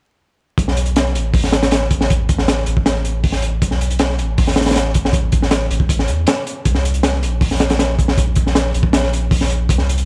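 A crunchy, gritty breakbeat kit with a high-tuned snare, tight kick and hi-hat sits up front beside a deep, round dub sub bass with tube saturation, both starting at 0.6 s and running to 10.1 s in this raw, nostalgic excerpt of 158 BPM jungle drum and bass, dry and dusted with vinyl crackle, the drums dark and rolled-off on top.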